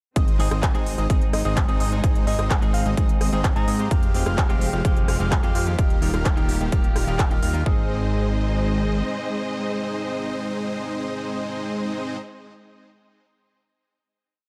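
Uplifting and anthemic, this short festival progressive house piece in Ab major at 128 BPM bursts straight into a drop built on a punchy, overdriven four-on-the-floor electronic kick and a crisp programmed kit of hats, rim clicks and claps, with a fat, saturated analog bass, a huge detuned supersaw riff pulsing in gated chords through sidechain pumping and delay, and, in the background, a dark, lush bowed string pad, an intimate grand piano arpeggiating high above, clean direct-recorded electric guitar chords and a round FM synth lead in brief phrases, before the drums fall away by 7.8 seconds and the arrangement settles onto a final Ab chord that rings until 12.2 seconds.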